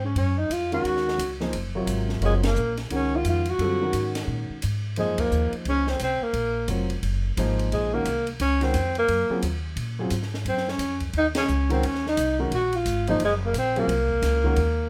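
A brisk 175 BPM swing in 4/4 drives this searching, spiritual modal jazz excerpt in Eb dorian, resting on an Ebm7 harmony with band accents at 2.4, 5.1 and 11.3 seconds. Up front, a woody, thumpy pizzicato upright bass on gut strings anchors the groove beneath an open acoustic drum kit with a high-tuned snare, boomy kick, hi-hat and ride, while a natural-sounding grand piano accompanies from 0.7 seconds. Also up front, the breathy tenor saxophone solos in a mellow, whispered subtone with soft attacks and scooped notes, at once intimate and roomy under light reverb.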